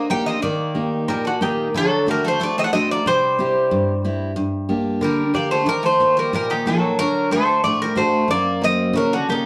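Heard from further back in a studio room with a short, wet reverb, this cool, bittersweet Greek folk excerpt in D phrygian dominant moves at 91 BPM in a straight 2/4, with an up-front, metallic bouzouki carrying the melody on its doubled strings, a brighter second bouzouki playing a lower line beneath it, and a warm, up-front picked steel-string acoustic guitar filling out the accompaniment across chords from Eb through D, C and Gm to a closing F# at 8.3 seconds.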